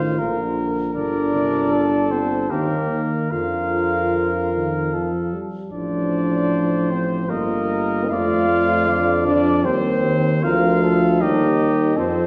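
Stately and triumphant, this excerpt of a classical brass quintet moves in a rubato 3/4 at 76 BPM in B-flat major, tuned to A4 = 435 Hz, with a clear cornet carrying the melody alongside the trumpet's higher second line, while the French horn, a dark, smooth-topped euphonium and an up-front bass trombone fill out the accompaniment and bass with light vibrato, all bathed in the wet reverb of a recital hall.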